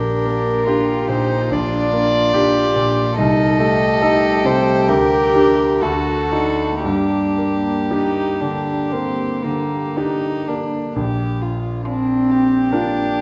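A bright, brilliant concert grand piano with deep bass accompanies this yearning, melancholic slow romantic movement for piano quartet in G minor, played with rubato at around 56-72 BPM. A close, up-front violin carries a pure, floating, airy sul tasto melody over a floating, smooth-topped cello line and an intimate second violin with light vibrato, which drops out at 12.5 s just after the harmony turns to Bb at 11.0 s, all set in a dark, warm recital hall reverb.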